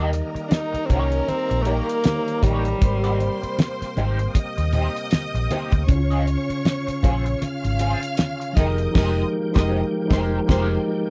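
Lush 1970s-style soul at a smooth 78 BPM in Ab major with a swung 16th feel, where a breathy, scooped alto saxophone carries the melody from 0.5 to 4.0 seconds over a cloth-damped, thuddy drum kit with a fat snare, a round foam-muted fingered bass, a mellow tine electric piano, a slightly broken-up guitar riff through wah and tremolo, a clear bowed string section on the second line, a gritty overdriven tonewheel organ with slow rotary speaker in the background, and soft-handed low-tuned congas, the dry, close studio sound moving through Eb7, Abmaj9, Dbmaj7 and Fm11 before a band accent at 9.0 seconds in this short cut from a longer piece.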